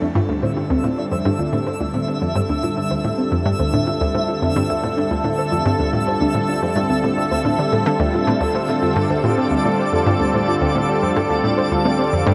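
Mysterious and expansive, this ambient excerpt moves at 109 BPM in a straight 4/4, resting on a single Dm7 chord in D minor. Up front, a lush unison pad holds thick, warbling sustained chords with chorus and shimmer reverb. Beneath it, an analog pluck plays a low riff in a bright, detuned sawtooth-and-square tone, while a soft round pluck spins gentle, dark arpeggios in the background, both carried by tape echo and shimmer. From 0.5 seconds a twinkling granular texture adds sparkling octave-up shimmer high above, and at 1.8 seconds a very quiet, nasal analog drone settles in on a low D with evolving pulse-width movement. The whole mix sits in a huge, wet ambient reverb with a long 7.5-second tail, giving the piece a vast, hovering space.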